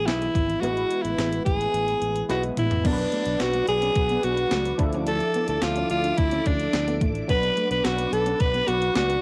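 This 1980s-style pop excerpt moves at 108 BPM in a straight 4/4, with a nostalgic, romantic mood and the intimate feel of a home cassette recording in a small, wet-sounding room. Up front, a raspy, gritty alto saxophone carries the melody with a punchy, close-miked edge, dressed in tape echo and plate reverb. Beneath it, round, detuned sawtooth keys with a filter sweep and chorus supply the accompaniment, while a fingered electric bass holds down the low end. A sampler-style drum machine enters at 0.1 seconds with a thumpy kick, medium-tuned snare, hi-hat, toms and crash, its overdriven sound re-recorded in the room, and a drum fill leads into the second section at 2.9 seconds. There, a vintage, organ-like string pad with phaser and ensemble chorus joins in the background alongside a compressed, slightly broken-up electric guitar riff, as the harmony moves from E to Bm and Dmadd9.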